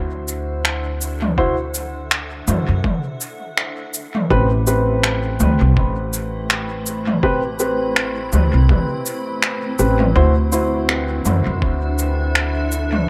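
Spacious and hazy, this ambient dub fragment, cut from a longer piece, moves at 82 BPM in 4/4 with a 16th-note swing. A granular cloud pad holds sustained chords throughout, its blurred, detuned sine tones evolving under their own reverb as they fade in across the whole span, while a dark upright piano, mellow and slightly detuned with a long sustain, places up-front stabs that trail into dub echo. The upright bass, plucked and woody with a growly steel-string edge, sits close and prominent from the first moment. An organic electronic kit of cabasa, finger snaps and toms carries overdrive and dub echo with a small-room character, joined from 1.4 s to 11.8 s by a muffled, pitched-down, thumpy kick that is compressed and overdriven. The harmony drifts from D7 to Am9 at 4.3 s and back to D7 at 10.2 s, all under a light reverb, and the piece is tuned to A4 = 438 Hz.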